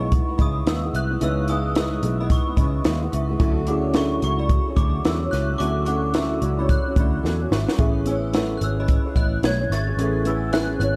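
A swung 110 BPM groove in 4/4 from a compact, dry cocktail drum kit with a punchy kick and high-tuned snare carries this mellow, wistful bedroom-pop fragment, with a round, foam-muted picked electric bass sitting up front and a drum fill at 7.2 seconds. Fingerpicked flamenco guitar with chorus and a warbly pitch drift joins nostalgic, detuned lo-fi synth keys with a cassette-tape character to fill out the harmony as it moves from C#m7 to Dmaj9 and then Amaj9. Above them, a bell-like glockenspiel struck with brass mallets carries the melody in a boxy small room, while an inharmonic FM synth chime adds a second line, shimmering through ensemble chorus, phaser and analog delay, all set in a dark, lightly reverberant mix.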